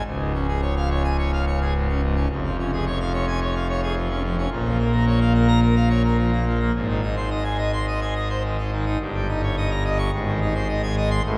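A classical organ toccata in D-flat major, this jubilant, brilliant passage moves at 107 BPM in a straight 4/4 and is cut from a longer piece. A solo pipe organ on full organ carries everything from 0.0 to 11.4 seconds, spanning a vast compass from Db1 up to Db6. Its mixtures give the sound a majestic, glittering edge, and the romantic voicing sits up front in the mix. A wet church reverb with a 3.4-second decay surrounds the instrument, lending a grand, resonant space. The harmony travels from Db through Db/F, Bbm and Ab before Eb7/G pulls toward a closing Ab.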